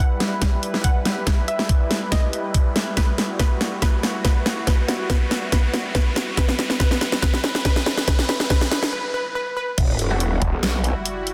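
Heavy wobble dubstep in a half-time feel, this short cut from a longer piece feels heavy and chaotic as it climbs through a build-up into a drop. A lush, detuned supersaw pad holds sustained chords with a slow attack and long release, pumping against the sidechain while a low-pass filter sweeps across it, and a punchy unison pluck carries the melody through a delay. Layered electronic drums sit up front, with a huge snare, hi-hat and crash running a fill alongside a riser, and a knocking, tape-warm kick anchoring the groove, before a short break at 8.9 seconds. The drop lands at 9.8 seconds with an impact and sub drop, as a growling, wobbling growl bass with a formant filter, chorus and overdrive enters. A bold, bright orchestra-hit-like stab flashes past with a phaser and its own reverb, and a snarling, detuned saw bass jabs in at 10.4 seconds, all inside a light digital ambience and a dense, heavily limited modern master.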